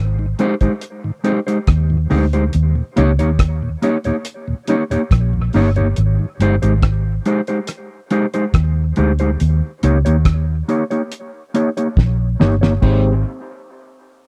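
A dry, close 1970s-style studio sound frames this hazy, spacious dub reggae excerpt in Ab major at 70 BPM, where a round, foam-muted fingered electric bass sits up front beside a cloth-damped drum kit with a fat snare, tight kick and dark cymbals that plays a fill from 12.0 to 12.8 s, joined by a clean, filtered electric guitar carrying dub echo and a soft, flute-like tonewheel organ with key click and a slow rotary speaker in the background, as a filter sweep runs through the passage and the harmony moves between Abmaj7 and Eb7.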